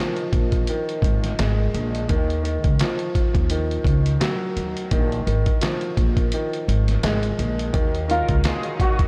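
A clear, woody upright piano opens this short, dark boom-bap hip-hop cut in Eb minor at 85 BPM with a light 16th-note swing, joined almost at once by a compressed, pitched-down sampler-style kit with a thumpy kick, medium-tuned snare, hi-hat and handclaps, and a pizzicato upright bass on gut strings, both sitting up front. The kick drops out from 6.3 to 7.7 seconds, and a veiled, con sordino string section then slips in lush and quiet in the background. At 8.1 seconds a fingerpicked flamenco guitar takes a brief melody while a mellow, distant horn section adds punchy stabs washed in diffuse delay, all within a small, lightly reverberant room.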